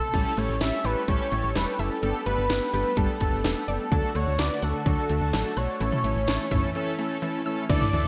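Wistful and nostalgic, this short synth-pop excerpt at 127 BPM sets a thick, nasal unison lead with delay over a punchy house drum kit with gated reverb, a round, dark FM bass, mellow chorused synth brass, a detuned analog pluck arpeggiating in the background and a shimmering string machine, all wrapped in a lush hall reverb and bright 1980s-style digital production as the chords move from A7 through Gadd9 and D back to A, with a break at 6.8 seconds.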